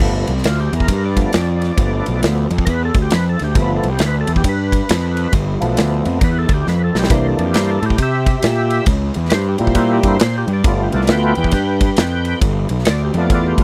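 A gritty, overdriven tonewheel organ takes the solo with thick sustained chords, key click and percussion colored by chorus vibrato and a slow rotary speaker, over a bright, fuzzed picked electric bass and an up-front rock kit of punchy kick, medium-tuned snare and ride that throws in a fill at 6.7 seconds, giving this raunchy, swaggering swung blues-rock and southern-rock excerpt a dry, close 1970s studio sound in a small room.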